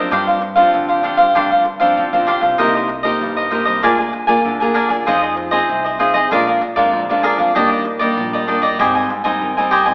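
A bright, crisp picked cavaquinho sits up front in this playful, festive samba fragment, joined by a small fingerpicked nylon-string guitar and a woody, growly pizzicato upright bass in the background, all moving through a progression from G7sus4 to Abmaj7 within a reverberant recital hall that has the narrow sound of an AM radio.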